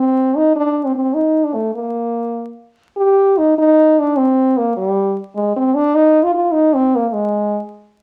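Mexican folk in a flexible, rubato 6/8, this brief passage cut from a longer piece carries a romantic, proud mood. A warm French horn plays alone and up front from 0.0 to 7.6 seconds, shaped in a classical style with light vibrato. A wet studio reverb and a layer of vinyl crackle surround the recording.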